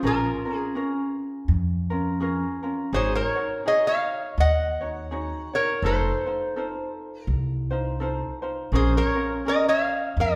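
A bright, metallic lap resonator guitar sings the fingerpicked slide melody of this sunny, languid Hawaiian excerpt from the first moment, with a light, fingerpicked ukulele in accompaniment and a woody pizzicato upright bass on steel strings underneath, all three up front in a reverberant recital hall over a gently swung feel and a Bbm7, Ab7sus4, F7 progression.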